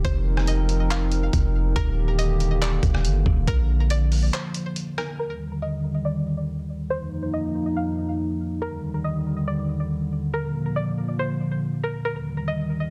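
A half-time 4/4 groove at 140 BPM opens this blissful, dreamy cloud-rap excerpt in Eb major. A muffled, pitched-down sampler drum kit of thumpy kick, handclaps, hi-hat and rim click sits up front with a deep, boomy 808-style sine bass, until the bass drops out at 4.3 seconds and the drums at 5.1. Meanwhile a dark, nasal analog pad of detuned square and sawtooth layers with a sub octave holds slow-attack chords through F7sus4, Ebmaj7 and Bb, and a bright, twangy string-like resonator pluck carries the melody with chorus and digital delay, its filter sweeping from 5.2 seconds onward in a dry, dense, heavily limited mix.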